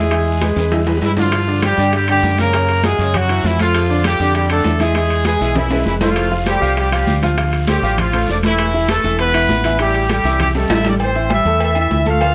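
A clear, up-front horn section carries the melody through this fiery salsa excerpt in A minor, moving at a brisk 198 BPM in straight 4/4. Beneath it, a dark, round fingered electric bass sits close and punchy, while a smooth grand piano with a vintage tinge supplies the accompaniment. The percussion is layered: ringing metal-shell timbales and agogo bells in a small room, high-tuned congas played with hard hands set back in the mix, a raspy, band-limited guiro that drops out at 11.0 s, and tight bongos and cowbell kept very quiet. Drum fills punctuate the passage, the first arriving at 0.6 s, and the harmony moves through colorful chords such as E7, Fmaj13, Dm7 and Esus4 before reaching Am7. A light reverb lends the passionate performance a gentle sheen.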